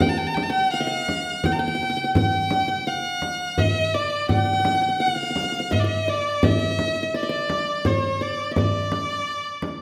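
A straight 3/4 pulse at 84 BPM carries this stately, warm fragment of an Arabic maqam ensemble piece in D maqam huzam, where a clear, smooth bowed violin with vibrato sings the melody up front, a mellow yet bright-edged qanun played with fingerpicks traces a second line, a close, dry frame drum struck with hard hands keeps time from the start, and a crisp, deep metal-shell darbuka joins at 2.2 seconds, all set in the bloom of a reverberant recital hall.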